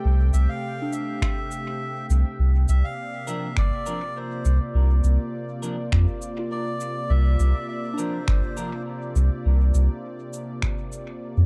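A smooth, detuned analog pad, a pure FM synth bell playing arpeggios in the background through chorus, phaser and dub echo, and a round, up-front sub bass open this peaceful, hazy ambient dub excerpt at 102 BPM in C mixolydian, moving from Am7 to C9sus4 as a reedy, breathy melodica carries the melody from 0.3 s over tape-warm electronic cabasa and finger snaps and a deep analog kick, while a clean semi-hollow electric guitar adds echoing stabs from 3.3 s in a dry, echo-heavy mix with a gentle swing on the 16ths.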